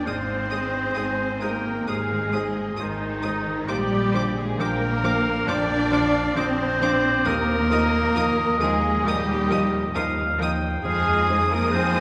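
Cinematic, longing and moving, this rubato orchestral passage, cut from a longer piece, sets a high, lush symphonic violin section melody with soft attack and vibrato over second lines from a distant, roomy solo clarinet and oboe and an expressive studio violin section with portamento, while a felt-muted upright piano sits dark and intimate in the background beside a very quiet, mellow French horn section, faint ringing concert harp arpeggios, a hushed viola section, a recessed cello section and a smooth, close double bass section, the ensemble set in a long, wet church reverb.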